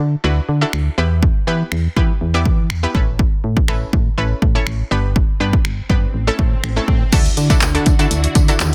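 A euphoric dance-pop fragment at 122 BPM in D major opens on a detuned, sawtooth analog pluck with chorus and sidechain pumping, riding over a round, dark FM bass that pumps as well. A punchy, tape-warm analog drum machine joins up front at 0.7 seconds with kick, hi-hat, handclaps, finger snaps, crash and a softly clipped snare, while the chords move from Dadd9 through Em, Aadd9, G and A. An electronic swell enters in the background at 6.1 seconds, and at 7.1 seconds the section turns back to Dadd9 as a mellow, warbling organ-string pad and a jingly acoustic tambourine enter behind a dense, heavily limited modern master.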